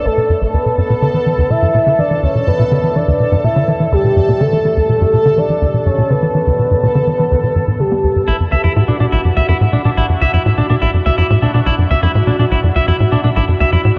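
Drenched in a huge ambient reverb and carrying the warble and pitch drift of a worn cassette tape, this excerpt of sequencer-driven space music in E minor moves at 124 BPM with an expansive, hypnotic mood. A tight, punchy sawtooth-and-square sequencer bass drives the riff up front with ring-modulated plucks and a filter sweep across its whole span, while a resonant, bubbling texture of random filter steps shimmers underneath. A round, octave-layered synth lead with tremolo, vibrato and a touch of 12-bit sampler grit carries the melody until 8.3 seconds, when a clean, picked electric guitar takes over with delayed arpeggios as the harmony moves to B minor.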